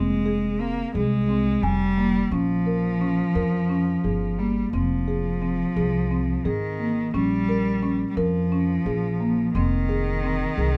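Urgent yet pensive, this short cut from a longer contemporary chamber piece moves in a straight 7/8, with a rich, bowed cello carrying the second line up front with vibrato, a dark marimba on padauk bars spinning arpeggios under medium mallets, and a thumpy pizzicato upright bass on steel strings holding the low end, the three parts playing together for the full 10.8 seconds in moderate studio reverb over chords shifting between Fm, Bbm and Fm7.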